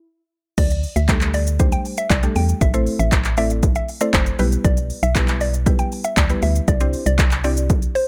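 An up-front deep house drum kit drives this confident dance-pop excerpt, with a punchy kick, smooth hats, handclaps, shaker and a crash cymbal, layered and re-recorded in a small room. After a brief stop, the drop lands at 0.6 s, bringing in a dark, hollow organ-like FM bass that pumps against the kick. A woody, mallet-like synth pluck carries the melody in a mellow upper register, its short, percussive notes given a faint noise layer and colored by chorus, phaser, slapback echo and sidechain pumping. From 1.1 s a second round, mellow pluck fills in the accompaniment beneath it, treated with chorus and pumping as well. The harmony moves from Dsus4 to Am, Em/B and Cadd9 in a dry, close mix that sits firmly in a straight groove.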